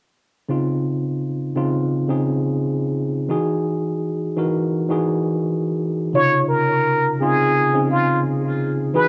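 Soulful, confident hip hop with a light swing, cut from a longer piece, opening on a worn, slightly out-of-tune tine electric piano that sounds lightly overdriven through its built-in speakers as it lays down jazzy ninth chords up front. At 6.2 s a plunger-muted trumpet enters as a jazz-style solo, breathy and wah-wah toned, with scooped notes and light vibrato, its line trailed by analog delay. Both parts carry a filtered, cassette-tape color, and the whole home recording sits in light reverb.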